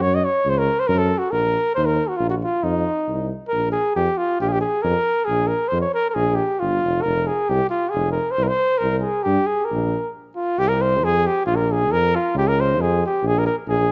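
A lightly reverberant recording with its highest frequencies trimmed away carries this virtuosic, restless Balkan folk excerpt in a straight 2/4, tuned to A4 = 437 Hz, where a dark trumpet with a smooth top and light vibrato plays the melody in a classical style up front, while a mellow, distant, roomy tuba, also touched with light vibrato, holds down the bass beneath it, until the music halts briefly at 10.1 seconds before a final section begins at 10.6 seconds.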